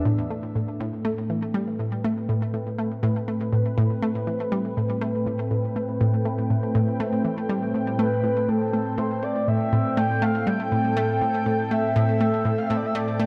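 A bright, round analog pluck drives this hypnotic, cosmic piece of sequencer-driven space music with a low riff, treated with chorus and delay, over a thick, detuned unison pad that holds sustained chords on an Am7 with a moving notch. At 8.0 s a breathy, flute-like synth lead enters with a soft, vibrato-tinged melody in a higher register, carried on lush chorus and delay. A wet plate reverb surrounds the parts in a spacious glow, and the cut ends at 13.3 s while the music continues.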